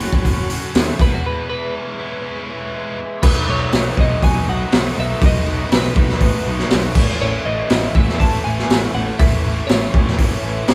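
A straight 4/4 pulse at 121 BPM drives this upbeat, wistful indie rock excerpt, played live in one room with moderate reverb: a gritty, boomy garage drum kit sits up front, a round, punchy fuzz bass holds the low end, an overdriven garage guitar with spring reverb and a scooped, high-gain distorted guitar in the background play riffs, a bright, compressed twelve-string electric guitar carries the melody, and a very quiet, warbling vintage string machine sustains lush chords, while a clean guitar solo opens the clip with a break from 1.2 to 3.2 s as the harmony moves from F#m and E6 to B7 and A6.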